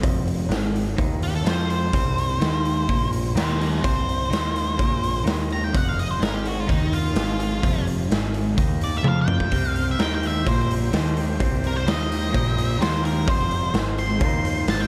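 Kaleidoscopic and hazy, this psychedelic rock excerpt drives along at 127 BPM in a straight 4/4, cut from a longer piece. A raw garage drum kit sits up front, its punchy kick, medium-tuned snare, hi-hat and toms sounding saturated and gritty in a pumping stone room with a rolled-off top, and a drum fill arrives at 9.0 seconds. Underneath, a growling picked electric bass adds a round, overdriven low end. A twelve-string electric guitar plays a twangy, clean riff through a flanger, placed in the background, while an octave-fuzz lead guitar enters at 1.2 seconds with a dark, distorted solo carried by delay. At 9.5 seconds a buzzy combo organ joins with sustained chords and heavy vibrato, tucked behind the band as the harmony moves from F5 through Fm7 to C5 and back, all wrapped in light reverb and small room ambience.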